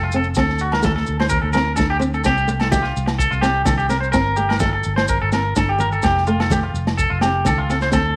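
An up-front, clean, twangy electric guitar plays arpeggios with slapback echo from the opening, joined at once by a fingerpicked flamenco guitar with audible finger squeak and a round, foam-muted fingered bass, while grainy maracas come in at 0.1 seconds. At 0.4 seconds a gritty, saturated breakbeat kit with a punchy kick and rolled-off top enters alongside very quiet ringing agogo bells and soft-handed, low-tuned congas in the background, setting a warm, danceable highlife groove at 127 BPM in 4/4. The chords move from D5 through C5 and Gmadd9 to Fadd9 under moderate plate reverb and a small-room ambience in this short cut from a longer piece.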